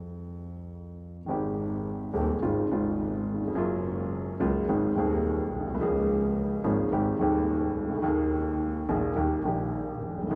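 A rubato tango pulse in 4/4 at about 106 BPM drives this brief, dramatic and sultry excerpt in A-flat major, cut from a longer piece. An up-front upright piano with a dark, mellow, woody tone and short sustain carries the accompaniment through lush major-seventh harmonies before settling onto E-flat at 9.2 seconds. A single bowed double bass, played sul tasto with a pure, floating sound, supplies the bass line, all bathed in a cathedral reverb with a 5.7-second tail that suggests a church or concert hall.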